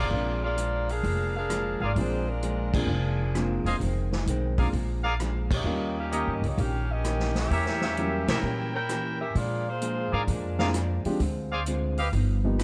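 A swinging 4/4 groove at 130 BPM drives this brassy big band jazz excerpt in Bb mixolydian, with a distant, roomy drum kit entering at 0.6 seconds on ride, hi-hat, rim click, punchy kick and crash, under a woody pizzicato upright bass sitting up front. A dark saxophone section with light vibrato carries the melody until 11.1 seconds, while a tight, soft-attack trumpet section adds stabs and the whole band hits accents at 2.7, 5.4 and 8.2 seconds. A smooth vintage grand piano and a clean, picked hollow-body electric guitar fill in the harmony, moving from Bb7 through Eb7 and Edim7 to a G7alt turnaround, all in light reverb.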